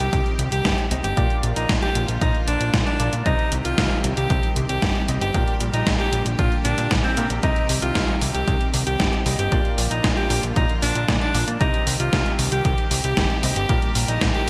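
Italo disco with a melodramatic, danceable mood, this brief cut from a longer piece moves in a straight 4/4 metre over a cycle of C minor and B-flat chords. An edgy, forceful alto saxophone carries the melody up front, close-miked with vibrato and a touch of delay, while a rich symphonic string section holds sustained chords in the background with light vibrato and a biting intensity. A bright grand piano adds stabs from further back, softened by subtle chorus and a low-pass filter. Underneath, a fat analog bass with a detuned sawtooth-and-square character, saturated and plucky in attack, drives the low end alongside a punchy, tape-warm electronic kick drum that enters at 0.1 seconds. A gated 80s digital drum machine supplies hi-hat and a snare with gated reverb, sitting forward in a large room. The whole track has a bright 1980s-style digital sheen in a lush hall reverb, with lossy compression artefacts.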